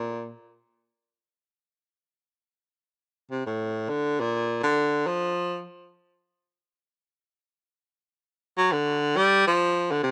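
Unmetered and floating in free time, this short jazz passage is cut from a longer piece and carries a relaxed, sophisticated mood. A lone baritone saxophone plays the whole thing as an unaccompanied solo, staying in its low register between A2 and G3. Its tone is warm and roomy, shaded with vibrato and a soft attack, and it sits up front even while keeping a slightly distant quality. The horn sounds in brief phrases, from 0.0 to 0.3 seconds, again from 3.3 to 5.6 seconds, and once more from 8.6 to 10.1 seconds, leaving open spaces in between. Recorded outdoors with little reverb, the playing comes across as dry and unhurried.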